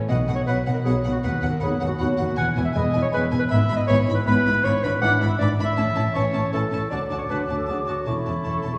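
A harp's ringing arpeggios open this playful, mischievous film cue at 158 BPM in a straight 3/4, joined at once by bowed double basses and cellos holding the low end in the background, the basses focused and the cellos smooth and lush. Within a fraction of a second the violin section carries the melody high up with a soft attack and expressive vibrato, while a clarinet sits up front on a second line, distant and roomy in classical style. A very quiet second violin line, even violas and, from 0.4 s, dark, very quiet French horns holding sustained chords fill out the middle, with an airy, hollow small flute group and a mellow bassoon arriving at 0.5 s. The harmony moves from B major through E toward A major at 4.6 s, passing through A and D before settling on A over E. The whole cue is heard from further back in a scoring stage, with a reverb of about 1.5 s, and it is cut from a longer piece, running to 8.8 s.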